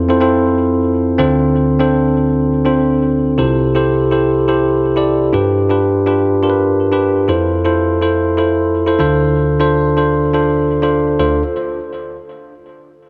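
Soaked in a long plate reverb, this moody, urgent pop fragment features a lone bell-like tine electric piano, bright, clean and up front with tape echo, as if heard through built-in speakers, moving through Fmaj7, Dm7, C6 and G7 from the opening until it falls silent at 11.4 seconds.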